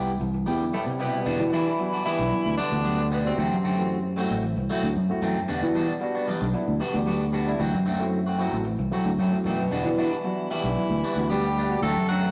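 Driving and hypnotic, this afrobeat excerpt rides a punchy, up-front fingered electric bass and two slightly broken-up electric guitars, one very quiet and scooped on arpeggios and the other twangy with phaser on stabs, while a barky tine electric piano comps from 1.4 s and a bright, vibrato-laden tenor saxophone carries the melody with a buzzy metal-muted trombone on a second line, both entering at 0.7 s and returning at 9.2 s, in a rough rehearsal-room recording with a wet stone-room reverb.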